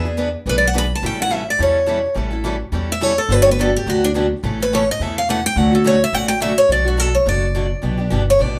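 A bright, up-front concert steel-string guitar with fresh strings and audible finger squeak takes a charming, swinging solo in this brisk 212 BPM jazz manouche excerpt in D major, backed by two boxy parlour guitars playing accompaniment (one set back in the background and dropping out at 6.5 s) and a woody, dark, thumpy gut-string upright bass played pizzicato, with the band heard live together in a small, reverberant room as the chords move from E7 and A7 through Gmaj7 and Dmaj7 to Bm7 and Em7.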